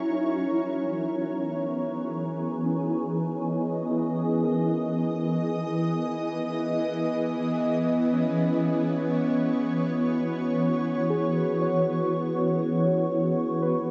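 Reflective and spacious, this ambient excerpt at 71 BPM in C# dorian sets a shimmering, ethereal pad holding a sustained C#m11 chord up front while muted, felt-like synth keys fade in with soft arpeggios in the background, all bathed in a long plate reverb that leaves the dreamy mix dark and hushed at the top.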